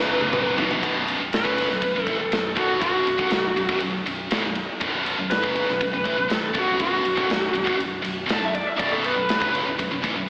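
Menacing and driving, this hard rock excerpt moves at 120 BPM in a straight 4/4 and is cut from a longer piece. It opens with a drum fill before a bluesy, overdriven lead guitar takes a solo from 0.8 seconds, its dark, distorted, picked tone sitting up front with slapback echo. Beneath it, a heavy high-gain guitar drives a low riff, bright and double-tracked, also distorted and treated with slapback echo. A big acoustic rock drum kit enters at 0.2 seconds with a punchy kick, medium-tuned snare, toms and glittering ride cymbal, while a fingered electric bass adds a growly, amped bottom end from the background. A lush hall reverb gives the whole an arena-sized scale, yet the sound also carries a narrow, boxy AM radio character.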